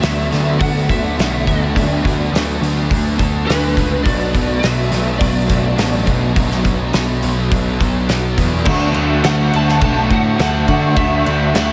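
A huge, reverb-soaked wash with a seven-second tail gives this blissful shoegaze and dream pop fragment, cut from a longer rock piece, its dreamy haze. The loose acoustic drum kit sits up front with a pumping room sound, dark cymbals, a rolled-off top, a medium-tuned snare and a punchy kick. An overdriven, fuzzed electric bass anchors the low end with a direct-and-amped tone. A thick fuzz guitar with distortion and analog chorus carries a riff alongside a slightly broken-up, lo-fi guitar through a small old amp, which sits in the background trailed by reverse reverb. Higher up, a lightly driven lead guitar plays the melody through ensemble chorus and analog delay, while a very quiet, bright, twangy twelve-string adds clean arpeggios. The harmony moves from D6 to Bm7 before arriving at D at 8.7 seconds, with every part playing through the full 11.7 seconds.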